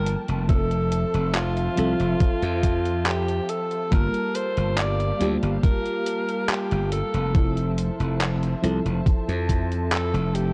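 A breathy alto saxophone leads this nostalgic, woozy vaporwave excerpt, carrying the melody with a soft, subtoned jazz vibrato, roughened by vintage 12-bit sampler grit and trailed by tape echo. Beneath it, a mellow FM electric piano lays down round, full-bodied chords through a lush chorus and its own tape echo, while a glassy slap bass sits up front with a bright, growly punch. Dark studio strings hold sustained, woody chords in the background, also carrying that gritty sampler texture. A detuned 8-bit drum machine adds handclaps and hi-hat from 0.1 seconds, and a thumpy electronic kick joins at 0.5 seconds, prominent in the mix. At a slow 70 BPM in straight 4/4, the harmony moves from Fmaj7 to Gm9 and back, all wrapped in a dark cassette-tape production with light reverb.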